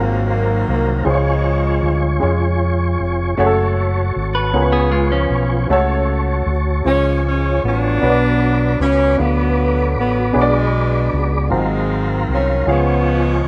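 A mellow saxophone section carries the melody up front with smooth vibrato in a jazz style, dropping out after 2.2 seconds and returning at 6.9 seconds, while a clean, picked electric guitar with spring reverb briefly takes a second line at 4.3 seconds. This is a solemn, fervent gospel piece at a slow 52 BPM in 6/8. Underneath, a round, punchy fingered bass sits forward, a dark baby grand piano with audible action noise accompanies from the background, and a soft, flute-like tonewheel organ holds chords through a fast rotary speaker and chorus vibrato, all in a rough home demo mix with light reverb.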